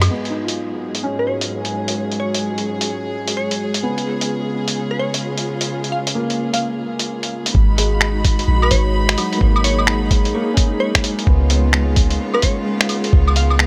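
A swung 129 BPM future garage groove of muffled, pitched-down claves, finger snaps, hi-hat and rim click sets a ghostly, melancholic mood in G# dorian, as dark bowed chamber strings and a felt-muted upright piano with audible action noise pump over G#m7 and C#7 while a glassy, detuned wavetable pluck carries the melody with chorus and delay, until a thumpy, tape-warm kick and a deep, round 808-style bass enter up front at 7.5 seconds in this fragment of a longer piece.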